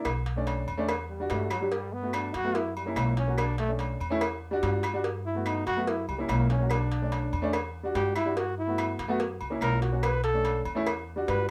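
Afro-Cuban jazz in B minor at 144 BPM in a straight 4/4, this sophisticated, sultry passage is cut from a longer piece. An upright piano with a woody, short-sustain tone sits up front alongside a thumpy gut-string upright bass played pizzicato, both cycling through Bm7, Em9, Gmaj7 and F#7. Entering at 1.1 seconds, a close-miked trombone takes the solo with a warm tone and light vibrato. The percussion bed combines ringing metal-shell agogo bells and timbales, a round, low-tuned vintage cowbell struck with hard hands, and dry, woody claves set further back. A drum fill lands at 6.5 seconds, and a moderate club reverb places the whole band in a club setting.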